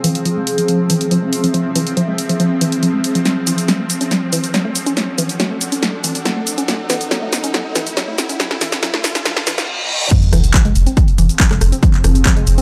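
Driving peak-time techno, hypnotic and dark, opens on a long build-up where a woody, wave-folded pluck riff with chorus and tape echo pumps over a swarming, warbling drone, a blurred granular cloud pad, an overdriven, up-front drum kit with a punchy snare, and background risers and a reverse cymbal, all under a filter sweep, as the harmony shifts from F minor to G-flat minor. At 10.1 seconds the drop lands with an impact as a heavy, overdriven kick arrives and the harmony returns to F minor, joined by a deep, tube-saturated sub bass at 10.2 seconds. The sound is dry and gritty, set in a moderate stone room.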